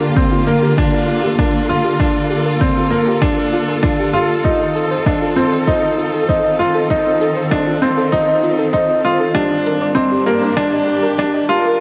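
Cinematic and moving, this piano and strings electronica build-up at 98 BPM in G minor sets a clear, woody upright piano riff with audible action noise up front over lush, bowed string chords with expressive vibrato, a soft, round pluck arpeggiating in the background through chorus, delay and sidechain pumping, and a punchy electronic kick with a high-passed shaker entering at 0.2 seconds, all moving from Gm7 to F7 to Ebmaj7/G in a dark hall-reverb production.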